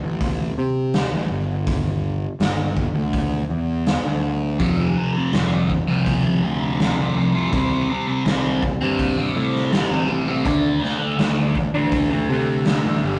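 An overdriven, picked fuzz bass opens this mysterious, trippy psychedelic rock passage in D minor at 82 BPM. A gritty, punchy garage drum kit of kick, snare and hi-hat joins at 0.2 seconds in a bright stone room. At 4.6 seconds a double-tracked, distorted guitar riff enters with a phaser, moving over F5, C5 and D5 chords, all captured in a rough, saturated rehearsal-room sound with light reverb and a rolled-off top.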